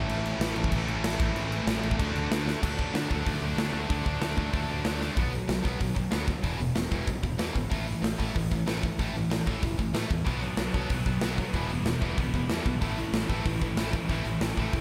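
A big, polished rock drum kit anchors this aggressive, urgent punk rock excerpt at 188 BPM in a straight 4/4, its punchy kick, medium-tuned snare, hi-hat and bright crash cymbals sitting up front in an airy, roomy sound, with fills marking the early section changes. Beside it, a tight, double-tracked distorted guitar drives the riff throughout, bright and forward. A second, scooped high-gain guitar adds its own riffing further back in the mix, dropping out at 5.2 seconds and returning at 10.3 seconds. A growly, direct electric bass with a picked attack holds down the low end. The harmony moves through A, Am and D before settling into minor chords and power chords such as Bm, E5 and Em, while a lush hall reverb gives the whole mix a big arena scale.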